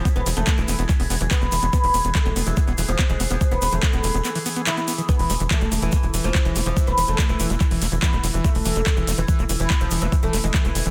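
A dense, heavily limited and dry mix carries this driving, psychedelic trance excerpt at 143 BPM in E major, where an overdriven, knocking electronic kick and a tight, punchy sawtooth sequencer bass sit up front beneath an overdriven garage kit of handclaps and metallic hats, a squelchy, gritty acid bass riff with 12-bit grit, distortion, delay and sidechain pumping in the background, a woody, bright plectrum-plucked fretless oud melody treated with phaser, delay and pumping, a chorused drone of moving overtones swelling slowly behind it, a very quiet grainy tube shaker, and a brief break at 4.2 seconds.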